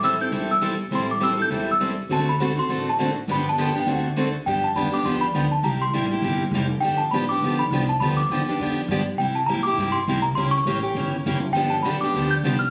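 A bell-like small celesta carries a charming, lively melody over two bright picked steel-string acoustic guitars and a woody, growly pizzicato upright bass in this brisk 203 BPM jazz manouche swing excerpt in G mixolydian, with the boxy second guitar dropping out after 4.3 seconds and returning at 11.5 seconds, all heard through moderate studio reverb in a phone recording of the room.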